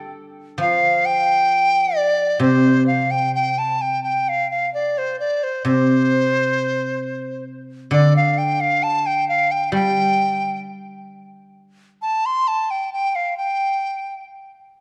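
A large dizi leads this graceful, wistful piece of Chinese traditional chamber music, its bamboo tone pure and bright with a buzzing membrane, tongued notes and vibrato as it carries the melody between C5 and C6. Alongside it, a guzheng played with fingerpicks provides the accompaniment from C3 to A4, its silvery strings ringing in the low and middle range. Both instruments sit up front in a free, rubato 2/4 feel around 66 BPM. The music is cut from a longer work, moving from a brief opening passage into a new section at 4.3 seconds. The guzheng stops at 12.5 seconds, leaving the dizi to finish alone at 14.2 seconds. A moderate scoring-stage reverb with a two-second tail surrounds the pair, and the overall production leans dark and warm.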